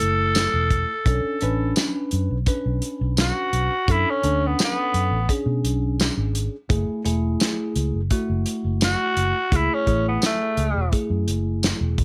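A breathy, raspy tenor saxophone solos up front through this smoky, soulful straight-eighth soul blues excerpt until 10.9 seconds, backed by a bell-like tine electric piano with phaser, a round, foam-muted fingered electric bass and a warm soul drum kit with hi-hat, tight kick, snare and tambourine, all in light reverb over F#m7, Bm9 and F#m9 chords.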